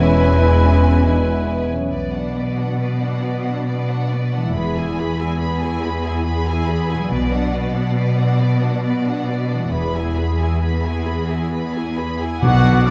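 Swashbuckling and determined, this heroic adventure film cue moves in a straight 12/8 at 91 BPM, its warm, vibrato-rich violin section carrying the melody over a second violin line, lush violas, fingerpicked ringing harp arpeggios, and a focused cello section up front with double basses beneath, all wrapped in a wet scoring-stage reverb heard from further back in the room. Winds and brass frame the passage only at its edges: airy flute, mellow oboe and a barely audible bright clarinet add second lines, dark French horns and faint trombones hold sustained chords, and a mellow trumpet plays stabs in the opening seconds before returning at 12.4 s. There, soft round timpani join on B2 as the excerpt, cut from a longer piece, moves between E and B minor harmonies.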